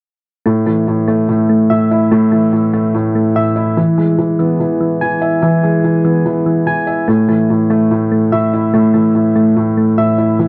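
This hip hop excerpt moves at 145 BPM in 4/4 with a half-time feel, giving it a slow, menacing and dark mood. A felt-muted upright piano plays accompaniment from 0.5 to 10.5 seconds, its soft, intimate tone dulled by a low-pass filter, with audible action noise sitting up front. Alongside it for the same span, soft electric-piano-like synth keys play arpeggios, their round, vintage, warbling sound shaped by chorus, a low-pass filter and digital delay. The harmony moves from A5 to E and back to A5. Moderate studio reverb and a dark production wrap the two keyboard parts in a shadowy, close atmosphere.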